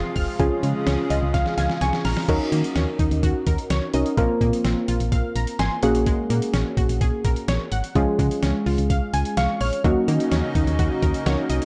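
Mellow, detuned sawtooth keys with chorus provide accompaniment in this cool, melancholic synth-pop excerpt at 127 BPM in Eb dorian, joined by a punchy, round FM bass with tube saturation, a bright chorused pluck playing arpeggios through tape echo, compressed, pitched-down lo-fi sampler drums with a thumpy kick entering at 0.2 seconds, and a lush unison pad that holds chords until 2.3 seconds and returns at 9.8 seconds, moving through Db, Ebm7, Bbsus2 and Gbadd9/Bb in a dry, gritty hardware recording with digital ambience.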